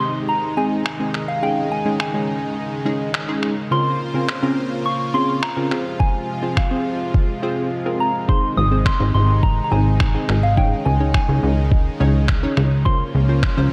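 Dance-pop at 105 BPM in 4/4 with an upbeat, summery mood, cut from a longer piece and set in a dreamy mix soaked in plate reverb, moving through Ab, Dbsus2, Bbmadd9/Db and Fm. A pure, gentle FM bell carries the melody with chorus and tape echo over a punchy, detuned polysynth comp and a lush, airy supersaw pad that pumps with sidechain, while a muffled, pitched-down sampler-style kit of finger snaps and a thumpy, overdriven kick sits up front from 0.9 s. After a brief silent gap at 7.7 s, a plucky, wave-folded analog bass enters at 8.6 s, punchy and decaying.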